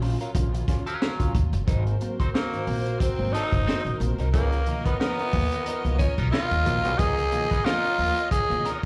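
A growling tenor saxophone carries the melody from 2.4 seconds, its breathy, raspy tone sitting up front with light vibrato and a slapback echo. Beneath it, this hypnotic funk groove, cut from a longer piece and set in 4/4 with a gentle swing on the sixteenths, rests on a crunchy breakbeat kit of punchy kick, high-tuned snare and hi-hat, saturated and gritty with a rolled-off top, alongside a woody pizzicato upright bass. A bright, twangy electric guitar at the edge of break-up plays accompaniment through wah and slapback echo, while a worn, slightly out-of-tune tine electric piano adds barky, lightly overdriven stabs from the background. Muted symphonic strings, bowed con sordino, hold veiled sustained chords moving from Ebm9 to Ab9 and then Db13. The whole performance comes across as a live gig heard through the venue's PA, wrapped in light club reverb.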